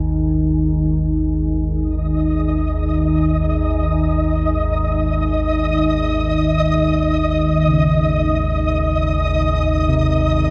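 Dark ambient drone in free time, this excerpt feels desolate and cavernous, suspended in a huge reverberant space. A deep, ominous drone rumbles at the bottom throughout, dark and up front with slow attack and long release. Above it, a moody pad of detuned sawtooth unison with a sub octave holds sustained chords, its tone shaded by a moving notch and thickened with chorus. Gamelan-type bossed gongs sit in the background, their metallic, bronze, beating tones rolling through arpeggios with tape echo. From 2.1 seconds a flickering, grainy granular texture joins on a single high note, adding a restless shimmer to the murk.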